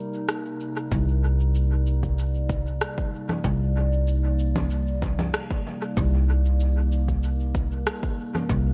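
A lightly swung 95 BPM groove in 4/4 and C minor drives this meditative, spacious ambient dub excerpt: electronic rim click, cabasa and congas with dub echo enter at 0.3 seconds over a warbly, lo-fi tape-like pad that holds a dark Cm7 with chorus and a slow attack, then a woody, up-front pizzicato upright bass on C2 with tube saturation and a deep, overdriven electronic kick drum arrive together at 0.9 seconds, with light reverb and digital ambience around the whole piece.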